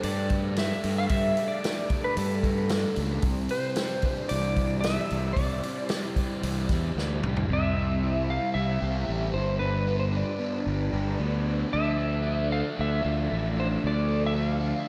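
A bright, overdriven fuzz bass sits up front in this trippy, mysterious slice of psychedelic rock, its punchy fingered line anchoring a straight 4/4 pulse until 14.7 seconds. A double-tracked fuzz guitar grinds out a compressed, picked riff colored by phaser, while a clean lap steel carries the melody with slide and volume swells, softened by subtle chorus and delay. Underneath, a very quiet, mellow string machine voicing violas holds soft-attack sawtooth chords with ensemble chorus and a moving notch. A vintage acoustic kit with a punchy kick and medium-tuned snare drives the opening passage, closing with a fill at 7.0 seconds before dropping out at 7.5 seconds, as the harmony moves from suspended and added-ninth colors into plainer C, G and D minor chords. The whole mix is dreamy and soaked in lush hall reverb, giving this fragment of a longer piece a hazy, vintage glow.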